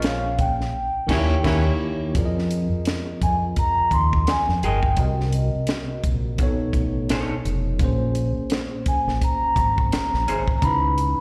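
A soft-mallet vibraphone carries the melody from the first moment, mellow and ringing with a slow motor vibrato, over clean tine electric piano, a round, dark fingered bass and a compact cocktail kit with a punchy kick and high-tuned snare, while a distant, roomy horn section punches short stabs in octaves until 1.6 seconds amid a band accent. This smooth, unhurried neo-soul groove swings its sixteenths and moves through lush extended chords such as Bbm7, Eb7b9 and Fm11. From 1.1 seconds a slightly broken-up, lo-fi electric guitar adds a picked second line, and the whole performance comes across as a live gig heard through the venue's PA in a reverberant recital hall, with plate reverb and slapback echo on the vibraphone, piano, horns and guitar.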